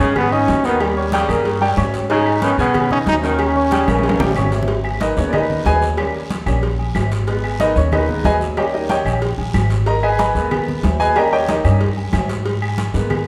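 Salsa at 185 BPM in G# harmonic minor, driving and passionate, opens with a brilliant, punchy trombone melody over a distant saxophone section until 4.3 seconds, while a drum fill from 3.9 seconds hands off to a clear, polished grand piano solo from 4.7 seconds, all carried by a woody, thumpy pizzicato upright bass, bright congas, raspy guiro, ringing agogo bells and timbales, claves and a saturated cowbell as the harmony alternates G#madd9 and D#7 in the reverberant wash of a recital hall.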